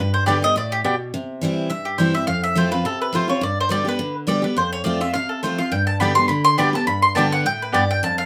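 Bluegrass at a brisk 209 BPM in 4/4, this driving, virtuosic passage is cut from a longer piece and sits in G mixolydian with a lightly swung eighth-note feel. A picked mandolin carries the melody throughout, its double strings giving a woody, up-front voice that ranges from G4 to C6. Beneath it, a picked steel-string dreadnought acoustic guitar supplies accompaniment, bright and full-bodied, spanning the low F2 up to G4. A second mandolin adds mellow, round stabs, first briefly at 0.3 seconds and again from 6.0 to 7.8 seconds. The chords move from G through C and F before returning to G, alternating F and G toward the close, all set in a moderate studio ambience.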